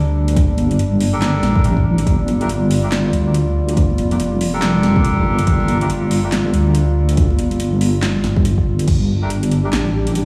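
A deep, wobbling sawtooth bass sits up front through this brooding, heavy deep dubstep excerpt in G minor at 141 BPM with a swung half-time feel, over a moody, detuned analog pad holding sustained chords, an overdriven electronic kick and house drum kit with punchy snare and metallic hats, vintage congas in the background soaked in dub echo, reedy, breathy melodica stabs from 1.1 seconds, and a flickering, grainy texture that drifts in at 9.3 seconds, all set in a big, bare-room studio reverb.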